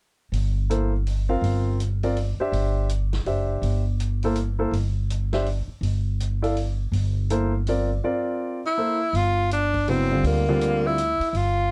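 A clear, punchy tenor saxophone arrives at 8.7 seconds with forceful, scooped notes and vibrato, leading this hypnotic, searching modal jazz fragment in G dorian, a brisk 164 BPM waltz with a swinging 3/4 feel. Beneath it, a woody, growly pizzicato upright bass sits up front from 0.3 seconds, joined at 0.7 seconds by a natural-sounding baby grand piano, while a quieter vintage drum kit of hi-hat, tight kick and medium-tuned snare, also entering at 0.3 seconds, carries 12-bit sampler grit and a rolled-off top. The harmony moves from Gm7 to Bbadd9/G and back to Gm7, all set in light reverb with a dark, warm production.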